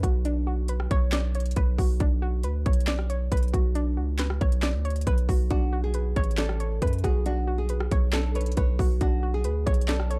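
Up-front overdriven trap drums with a hard-clipped kick, sharp snare, crisp hats, handclaps and rim clicks drive this melancholic, hard-hitting half-time fragment of a longer piece, joined by a deep, decaying sine 808 bass and a mellow, chorused pluck in soft accompaniment, before a woody, fingerpicked nylon-string guitar takes the melody at 5.5 seconds in a dark, dry mix.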